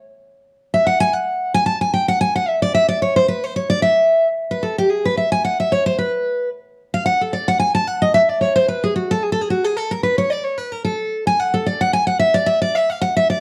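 A picked steel-string dreadnought guitar plays alone from 0.7 to 13.4 seconds, its full-bodied tone sitting up front in this joyful, lively bluegrass fragment with a brisk, lightly swung feel. The same section repeats from 4.4 seconds. The recording has the worn character of old cassette tape, with a warbly pitch drift and a moderate studio reverb.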